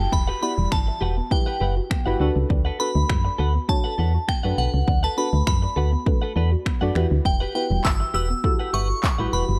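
Dance-pop with a driving, bittersweet mood, cut from a longer piece, where a punchy, round FM bass and an up-front electronic drum kit of kick, handclaps and finger snaps anchor deep, mellow chord stabs that pump with the sidechain beneath a glassy, crystalline synth bell melody carried on chorus and tape echo. A clean, picked twelve-string electric guitar plays a riff bathed in lush chorus, while a soft, detuned pluck sits in the background with arpeggios, and a very quiet downlifter sounds in the opening 2.5 seconds. A jingly tambourine joins at 7.8 seconds, all set in a dark digital ambience.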